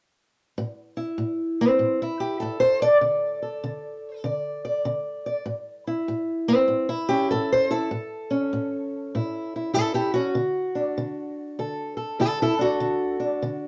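Swung eighth notes at 98 BPM in 4/4 give this rollicking, laid-back acoustic country blues in A major its easy gait. A lone fingerpicked, ladder-braced acoustic guitar with an old, dark, boxy tone sits up front from 0.6 to 13.7 seconds, moving between A5, D5, A and D chords. A moderate studio ambience surrounds this short excerpt from a longer piece.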